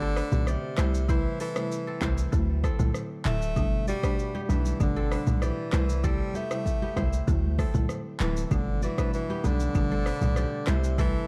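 A breathy, whispered tenor saxophone carries an intimate melody with light vibrato through this joyful, breezy afrobeats excerpt, echoed by digital delay alongside a bright, ringing fingerpicked kora riff. Beneath them, a punchy, saturated 808-style bass sits up front, while an overdriven electronic afro-pop kit with a deep kick, metallic hats, handclaps, rim click, shaker and toms drives the groove, and a buzzing, woody marimba adds dry accompaniment. Very quiet, thin-skinned congas join at 3.6 seconds, all within a dark production and small room ambience.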